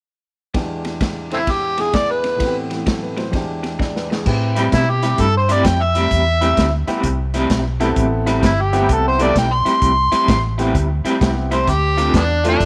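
A swung electric blues shuffle, brooding and soulful and cut from a longer piece, sets a vintage drum kit with dark cymbals, a woody upright piano with audible action noise, and a slightly broken-up electric guitar riff with tremolo beneath a gritty, overdriven harmonica that leads from 1.3 s with tongue slaps and scooped notes, while a round, foam-muted electric bass enters up front at 4.3 s after a drum fill, the whole set in a small room with light reverb.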